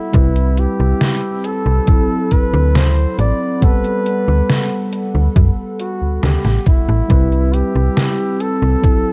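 A woozy, faded vaporwave excerpt cut from a longer piece, where a breathy flugelhorn with vibrato and tape echo sings a jazz-style melody over a mellow tine electric piano accompaniment, a warbling, nostalgic pad sitting in the background, a snappy, metallic FM bass with tube saturation, and an up-front thumpy kick with a fat-snared, detuned 8-bit drum machine, all passing through Cmaj7, D13 and Gmaj9/D with a lo-fi cassette tape sound.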